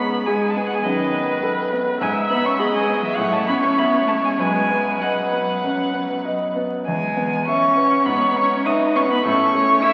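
All four players of a piano quartet sound together from the very start of this spirited, lively classical-period movement in E major, taken at a quick 100 BPM in 4/4 with uneven, rubato beats. Up front, a single violin carries the melody high in its range with a rich, focused tone, vibrato and a smooth top. Beneath it, a more distant cello sings a smooth, even second line, while the viola adds smooth, even bowed accompaniment with vibrato. The concert grand piano, also up front, offers clear, natural accompaniment anchored by deep bass. The harmony moves from G#m through B7/F# and A69 to a B chord at 4.4 seconds, then settles on E at 6.9 seconds before turning toward A at 9.2 seconds, as this short excerpt from a longer piece ends at 9.9 seconds. The whole performance sits in a wet church reverb and carries the crackle of a very old 78 rpm record.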